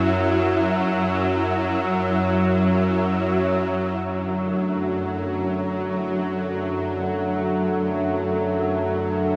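A tense, nasal, bowed-like drone with vibrato sits up front over a breathy, wind-like tuned noise texture in the background, opening this unsettling dark ambient drone in free time, until at 4.1 s the wind ends and a deep, detuned analog pad with chorus and a sub octave takes over with sustained chords, moving from Esus2/F# to D beneath a huge, wet reverb in this short excerpt from a longer piece.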